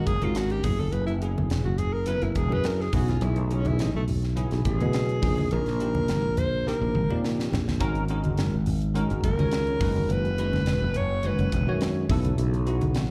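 Electric jazz fusion with an intense, nocturnal mood, heard live through a club PA with light reverb, this short cut from a longer piece features a mellow alto saxophone soloing with vibrato, subtone and scooped notes over a bell-like tine electric piano treated with analog chorus, while the saxophone carries a slapback echo. A growly, up-front fretless bass sustains beneath them, and a crisp, airy drum kit with a high-tuned snare and tight kick plays a fill at 6.7 seconds. Thick-skinned, low-tuned congas sit in the background as the harmony moves through mostly suspended ninth chords.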